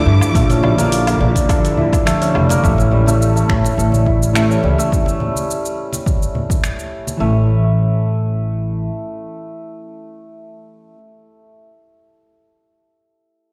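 Organic downtempo with a meditative mood, cut from a longer piece, where a shimmering, hammered santur rings out in arpeggios up front over a woody, pumping pizzicato upright bass and a punchy, overdriven electronic kick. A rich bowed string section holds smooth chords with vibrato until 2.6 seconds, while a dark, clean electric guitar carries accompaniment with gritty vintage sampler texture, pumping and tape echo, and very quiet soft-handed congas sit beside an overdriven deep house kit of finger snaps, hi-hat, shaker and woodblock. The kick drops out at 6.6 seconds and the rest of the drums follow at 7.2 seconds, leaving bass, guitar and santur in a stone-room reverb that sounds like a big sound system playing in a bare space.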